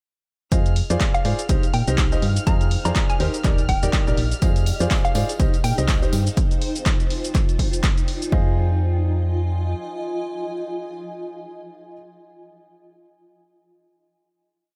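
A swung four-on-the-floor pulse drives this bittersweet, soulful piano house piece, with a dry, punchy electronic kick up front and a programmed analog drum machine supplying handclaps on the backbeat, closed and open hi-hats, and shaker, joined briefly by a very quiet tambourine from 4.4 s. A round, dark FM bass plays a funky syncopated line with a fast attack that decays quickly, pumping against the kick. A clear, slightly boxy grand piano carries the main riff in close-voiced, dotted-rhythm chords with short sustain, dub echo and sidechain pumping, moving through Fm7, Cm and Ebmaj7 before a C7sus4 turns the drop back home. Behind it, a bowed chamber string section holds a smooth high note with vibrato deep in the background, while a hollow, warbling square-wave pluck with chorus and dub echo adds short, bouncy phrases. A cloudy, blurred granular pad with slow attack, built-in reverb and long release drifts through slowly shifting chords, and after the drop ends at 8.3 s the piece settles on a final Fm7 chord carried by the piano and that evolving pad, all set in a digital ambience.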